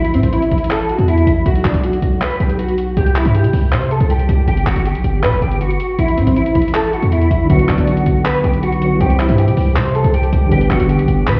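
A half-time trap groove at 159 BPM drives this melancholic, dark hip hop excerpt in B phrygian, with a compressed, pitched-down sampler-style kit of handclaps and hi-hat sitting low beneath a distorted, aggressive 808-style bass that hits up front with a fast attack and a gritty noise layer. A clean, fingered electric guitar carries the melody through ensemble chorus and digital delay, joined at 7.4 seconds by a dark, vintage grand piano with long sustain. The whole mix sounds muffled, as if heard through a wall, set in a stone room reverb with light digital ambience.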